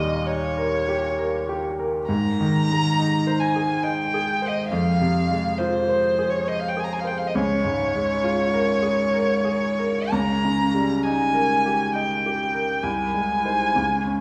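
Tender and warm, this romantic classical duo in Ab major moves at a slow, rubato 67 BPM in 3/4, cut from a longer piece, with a vibrato-rich, portamento-inflected violin singing a soft-edged melody between C5 and Bb5 above a bright, brilliant baby grand piano accompaniment reaching down to C2 and sustaining long. Both play from 0.0 to 14.2 s through a harmony that opens on Eb7, settles on Ab and passes through Fm and Bbm7/Db before landing on Ab/C. A lush recital hall reverb of 1.9 s places the listener further back in the room, lending the expressive bowed line a distant glow.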